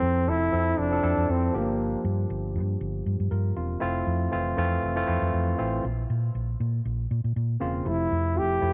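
A light reverb and small room ambience frame this short, up-front disco excerpt in F major, moving at a steady, straight 119 BPM in 4/4 with a danceable, celebratory mood. A breathy trombone carries the melody in a whispered, intimate pop style, its soft attack and smooth top sitting close to the listener; it opens the clip, stops at 2.1 seconds, and returns at 7.9 seconds. Underneath, a barky tine electric piano plays accompaniment throughout, lightly overdriven through a combo amp. A short-scale hollow-body electric bass, played with the fingers, holds the low end with a dark, round, amped tone coloured by tube saturation. The harmony moves from Fmaj7 to Gm7, back to Fmaj7, then to Bbmadd9 before settling on Fmaj7 again, all within a single section cut from a longer piece.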